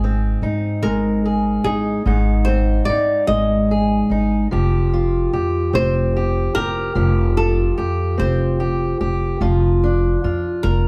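Heard from a little further back in a studio room with moderate reverb, this short cut from a longer folk piece is heartfelt and hopeful, moving in an unhurried 6/8 at 49 BPM. Up front, a dark fingerpicked steel-string acoustic guitar and a woody, thumpy pizzicato upright bass carry the harmony from Ab through Fsus2 to Dm/F. At 0.8 seconds a warm flamenco guitar enters with the fingerpicked melody, its finger squeaks audible.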